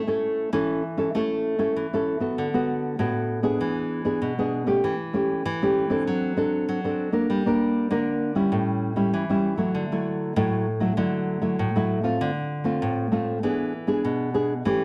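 A dark, warm production places a lone nylon-string guitar up front in a large studio with moderate reverb that rings for about 1.3 seconds. This short excerpt is a playful, joyful samba in D major at 98 BPM in a straight 4/4, tuned slightly high to A4 = 442 Hz. The classical acoustic guitar plays solo throughout, thumb-plucked across a range from A2 to Bb4. Its harmony moves from A through D6, E7 and A7/E, then touches a borrowed Gm before resolving to Dadd9. At 12.2 seconds the piece shifts into a new section, turning to Dm7 and E7 before the clip ends at 14.8 seconds.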